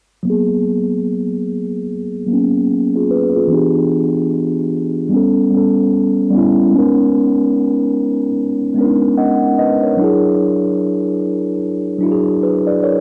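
Swung sixteenths at a slow 74 BPM in 4/4 give this melancholic, nostalgic hip hop fragment, tuned slightly sharp to A4 = 444 Hz, its lazy lilt as a mellow, clean tine electric piano sits up front from 0.2 s, its cassette-tape haze and low-pass filter sweeping throughout while a moderate spring reverb wraps the home-recorded sound through chords of G#m9, Em7, A9, Bmaj13 and E9.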